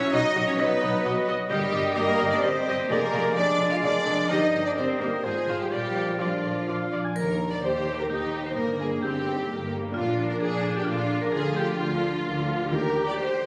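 A clear, punchy oboe stands out in this playful, magical film cue in 3/4, joined for its first half by a bright clarinet, a distant, roomy bassoon, an airy, hollow flute section and mellow French horns holding chords in the background, all of which drop out by about 7 seconds. A woody marimba struck with hard mallets and a bowed violin section share the melody, with a second violin line behind them, rich violas, smooth cellos and lush double basses underneath, and a ringing, fingerpicked harp playing arpeggios throughout, while a barely audible triangle sounds briefly from 7.2 seconds. The ensemble sits in a wet scoring-stage reverb, yet the sound comes across as if captured on a phone in the room, with club-like reverb and compression, in this passage cut from a longer piece.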